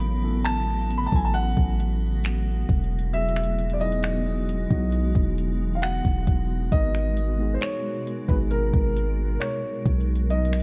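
A deep, sine-toned 808-style bass and an up-front electronic drum kit of soft kick, finger snaps and smooth hi-hat, roughened by vintage 12-bit sampler grit, anchor this moody, longing contemporary R&B piece, while a dark, boxy concert grand with long sustain carries the melody through a digital delay over a mellow, clean tine electric piano and a cloudy, detuned granular pad blurred in its own reverb, all in a dry, shadowy production cut from a longer work.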